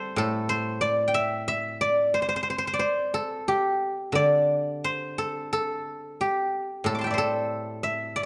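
Chinese traditional solo plucked-string music in the A yu mode, this short 8.3-second fragment of a longer piece carries a longing, elegant mood, moving freely in rubato around 90 BPM in 4/4. A fingerpicked acoustic guzheng plays alone up front, its bright, silvery, ringing tone spanning A2 to D6. A moderate recital-hall reverb surrounds it, and the overall production is dark.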